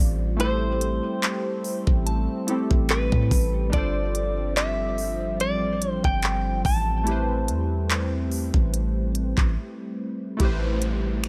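A clean, direct-recorded electric guitar opens this excerpt of sensual, longing contemporary R&B, carrying a compressed, picked melody with delay over round, detuned analog keys, a shimmering, dark pulse-width pad and a deep, boomy 808-style bass. A soft, warbling FM bell glints in the background with chorus and delay, and an electronic trap kit joins at 0.4 seconds with a knocking kick, crisp hats, finger snaps and handclaps sitting up front beside the bass and guitar. At a slow 72 BPM in 4/4 with a light swing on the sixteenths, the harmony moves from Am7 to G7sus4 and back to Am7 in A minor, the keys adding a filter sweep and chorus while the pad's ring modulation and moving notch give it a retro shimmer. The guitar falls silent at 9.1 seconds, a brief break follows at 9.6 seconds, and an electronic downlifter enters at 10.4 seconds to close the passage. The whole mix sits in a digital ambience.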